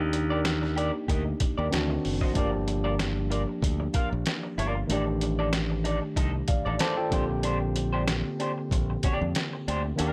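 This bittersweet, silky excerpt of lush 1970s-style soul at 94 BPM in a gently swung 4/4 brings in everything together from the start: an overdriven, barky tine electric piano, a slightly broken-up, lo-fi electric guitar riff with harmonic tremolo, a bright, punchy fingered bass up front, and a gritty, pitched-down trip hop sampler-style drum kit with a thumpy kick and tape-warm snare and hi-hat, all in a dry room over chords moving from Ebmaj7 through D7b9, Gm7 and F13/A to Bb69, with an electric piano fill at 6.5 seconds.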